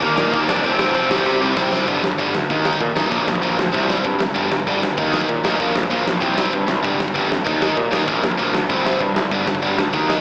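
At a driving 194 BPM in straight 4/4, this aggressive, raw punk rock cut in G minor starts with every part at once, led by a short, dark overdriven lead guitar line that sounds only for the first 1.4 seconds, with slapback echo and digital delay on it. A biting, bright, double-tracked rhythm guitar with slapback echo plays the riff up front alongside a growly fuzz bass, while a big acoustic kit with a fat snare and punchy kick plays a fill from 1.3 to 1.9 seconds. The chords cycle through Eb, F, C, G and Bb, and the whole thing comes across like a live gig heard through the venue's PA, with recital hall reverb and a small speaker sound.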